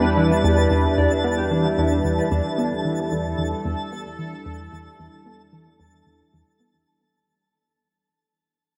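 A bright, up-front resonant pad sweeps and evolves through sustained Em7 chords in this cosmic, hypnotic stretch of ambient space music, cut from a longer piece and bathed in a huge, wet reverb. Beneath it, a tight, driving sequenced synth riff of detuned sawtooth and square waves with a plucky filter and delay carries a filter sweep, while a slow-attack analog drone with pulse-width modulation sits low in the background and fades out. A dark, clean, fingered electric guitar plays delayed arpeggios in the background only until 2.4 s, and a twinkling granular texture adds an octave-up FM shimmer on top as the whole passage fades.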